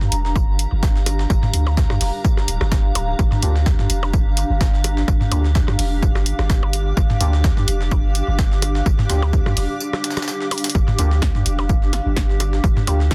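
A swung 4/4 groove drives this hypnotic, sparse minimal techno excerpt: an up-front electronic kick, tape-warm and punchy, anchors the pulse alongside an analog drum machine supplying hi-hat and snare. Behind them sits a quieter, gritty breakbeat sampler-style kit, pitched up and compressed, with filtered hi-hat, medium-tuned snare and tambourine, while electronic percussion blips and toms echo through a digital delay. A deep sine sub bass with a pitch-drop attack pumps with sidechain compression, and a granular cloud pad, blurred and detuned with slow attack and long release, drifts through its own reverb with the same sidechain pumping. From 3.4 seconds a mellow, hollow organ stab appears in the background, its decaying hits coated in lush chorus and delay over a Gm7 harmony. A short break arrives at 9.8 seconds, with a drum fill at 10.5 seconds, all under light reverb and a dense, heavily limited master.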